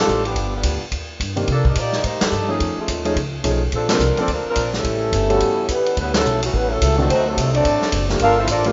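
A fast swing at 214 BPM in 4/4 drives this brassy, joyful big band jazz excerpt, with an acoustic drum kit of punchy kick, snare, hi-hat and ride sitting up front beside a woody, thumpy pizzicato upright bass on gut strings and a warm, natural-sounding baby grand piano playing accompaniment through rich chords such as Cm9 and Bbmaj9. A mellow saxophone section carries the melody with light vibrato and a smooth top, while a vintage-toned trombone section joins at 4.8 seconds as a second line, and the full band hits accents at 2.2, 3.9 and 6.1 seconds. A lush hall reverb surrounds the rough home-demo mix, whose dull, rolled-off top end gives it a soft, unpolished character.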